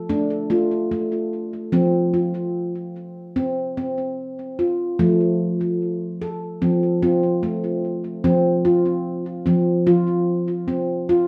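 A lone ringing handpan of nitrided steel, played up front with the fingertips and touched by delay in a boxy small room with wet reverb, carries this calm, gentle meditative world piece at 74 BPM in F major pentatonic, moving from D minor to F across a short passage cut from a longer work.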